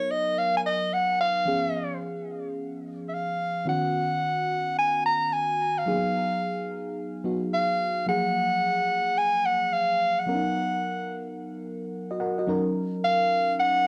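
A soprano saxophone carries the melody up front in a jazz-style solo across this upbeat, bouncy R&B fragment at 109 BPM in 4/4, swung on the 16ths and tuned to A4 = 436 Hz. Beneath it, a mellow FM electric piano with a round, dark tone, a noise layer, chorus and cassette tape coloring plays the accompaniment from 0.0 to 13.9 s, moving through Bmaj7, C#9sus4, G#m7 and F#maj9 before settling on D#m7 at 12.5 s. A short, wet small-room reverb and the soft haze of a home cassette recording give the piece an intimate, lo-fi warmth.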